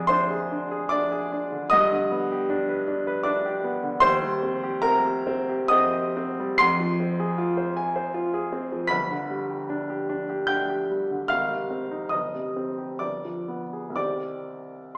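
A clear, polished baby grand piano opens alone on a diminished chord and carries this wistful, melancholic romantic nocturne in C minor, a fragment of a longer piece, moving in a rubato 3/4 at 59-80 BPM across a range from G1 to C7, its short-sustained tone sitting present and up front yet heard from further back in a reverberant recital hall through a small speaker, with the harmony passing through F minor and A-flat before a G7b9 resolves to C minor at 14.0 seconds.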